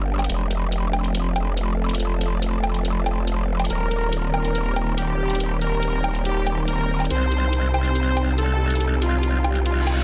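A growling, wobbling bass, saturated and up front, opens this chaotic, menacing heavy wobble dubstep excerpt at 141 BPM in a half-time feel, tuned to A4 = 437 Hz. Alongside it, a thick, detuned unison pad with chorus holds sustained chords and carries a filter sweep throughout, while an ethereal, airy pad floats in the background with ensemble chorus and built-in reverb. Muffled electronic hi-hat and woodblock enter at 0.2 seconds, a smooth, evolving supersaw melody with delay arrives at 3.7 seconds over chords moving from F to Eb6 to Cm, and a reverse cymbal sounds at 9.8 seconds, all within a light digital ambience and a dense, heavily limited master.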